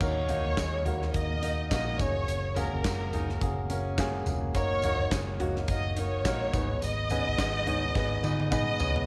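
Dramatic and bittersweet, this short piano-driven pop cut in Eb minor moves at 106 BPM with a light sixteenth-note swing, as a lush, bowed violin section carries the expressive melody up front over a natural-sounding baby grand piano and a dark, round, foam-muted electric bass. A huge arena drum kit with a punchy kick, handclaps and toms fills a big room alongside a jingly, band-limited tambourine, while a full-bodied fingerpicked dreadnought acoustic guitar plays a riff in the background from 0.3 seconds. The chords pass from Ebm through Gbadd9 to Abm under light reverb, and a drum fill closes the passage at 8.0 seconds.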